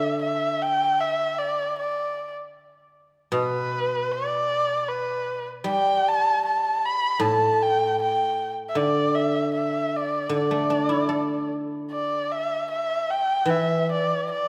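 A moderate concert-hall reverb surrounds this pastoral, graceful Chinese traditional chamber excerpt, taken from a longer piece and played rubato at around 77 BPM in 4/4. Up front, a single bowed erhu carries the melody with a dark, woody tone and a smooth top, shaped by vibrato and portamento. Beside it, a guzheng played with fingerpicks supplies a ringing, silvery accompaniment lower in range across the full 14.5 seconds.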